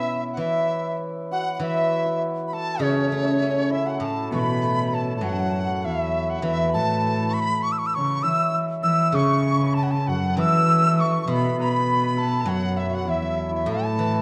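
Chinese traditional chamber music, pastoral and festive, moving at 100 BPM in 2/4 with a rubato feel in an A gong mode, cut from a longer piece. A reedy large dizi carries the melody up front with buzzing-membrane vibrato and crisp attack, while a brighter, tongued dizi, a shimmering hammered dulcimer and a silvery steel-string zither played with fingerpicks ring alongside from the start. At 4.3 seconds an intimate bowed cello joins, played sul tasto with light vibrato, all set in light reverb with a dark, warm production.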